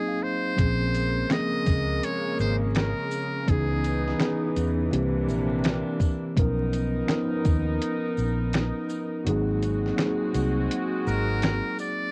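A buzzy, metal-muted trumpet leads this hazy, melancholic lo-fi hip hop excerpt, stating a jazz-style melody from the opening until 4.6 seconds and returning briefly at 11.1 seconds, its thin tone softened by a low-pass filter and cassette tape. A mellow tine electric piano carries the harmony throughout, moving through lush ninth chords under a laid-back swing. From 0.6 seconds a dusty, sampler-style drum kit sits up front with a thumpy kick, fat snare, hi-hat, shaker and finger snaps, all roughened by 12-bit grit, while a dark, round, foam-muted fingered electric bass adds punchy low end and a jingly tambourine stays close and dry in the background. A bowed string section with a reedy, gut-string tone holds smooth sustained chords beneath, also filtered and taped. The kick drops out from 9.3 seconds, and the whole excerpt is wrapped in light reverb and vinyl crackle, giving it the feel of a home cassette recording.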